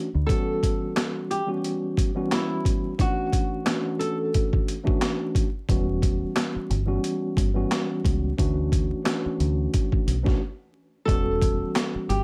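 Gritty and moody, this swung boom-bap hip-hop excerpt sets a mellow tine electric piano, tinged by cassette tape and bathed in plate reverb, over a compressed sampler-style drum kit with a thumpy kick, high-tuned snare, hi-hat and handclaps, while a dark, round, foam-muted fingered electric bass settles in from 5.7 seconds, a fingerpicked flamenco guitar with audible finger squeak and digital delay carries the melody early and returns at 11.1 seconds, a very quiet saturated finger snap lands at 11.8 seconds, and vinyl crackle runs beneath the whole.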